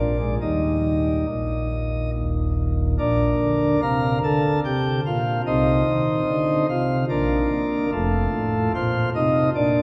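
A solo pipe organ, voiced with light, bright flute stops that sparkle up front, carries this short classical chorale-style passage cut from a longer piece. The mood is reverent and serene, moving in 3/4 at around 72 BPM with uneven beats and a flexible rubato feel. Set in Bb major, the harmony opens on Eb, turns to Bb as a second section begins at 3.0 seconds, and passes through F5/C and Bb before arriving on F. The organ spans a broad compass from Eb1 up to Bb5, giving the romantic voicing a deep foundation beneath its shimmering upper line. A cathedral reverb with a long 5.9-second decay wraps the sound in a spacious, wet halo.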